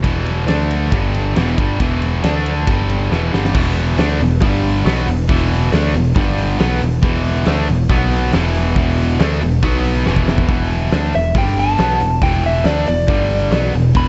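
A lightly reverberant, darkly rolled-off mix opens this menacing, driving hard rock cut from a longer piece, moving at 139 BPM in E minor with a growly, punchy picked electric bass up front and a big-room acoustic drum kit with a fat snare and punchy kick. Three bright, picked guitars sit in the background playing riffs: a cranked stack guitar with overdrive, a high-gain distorted guitar, and a tight, double-tracked distorted guitar, with the cranked stack dropping out at 10.5 seconds just after a drum fill. At 11.2 seconds a slightly broken-up, compressed lead guitar enters with a plate-reverbed solo between D5 and B5 over the power-chord progression.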